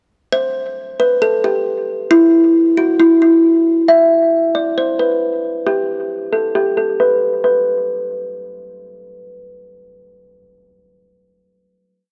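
Menacing and hard-hitting, this short trap hip hop piece moves at 135 BPM in a half-time 4/4 feel, set in B phrygian and tuned slightly sharp to A4 = 441 Hz. A solo kalimba carries it, its woody, bright thumbnail plucks forming a short looping melody that repeats like a sample and sits up front, shaded by low-pass filtering and analog delay. A filter sweep runs through the breakdown from 0.3 to 7.4 seconds before a final note rings out, all captured as a dry, gritty cassette recording in a small room.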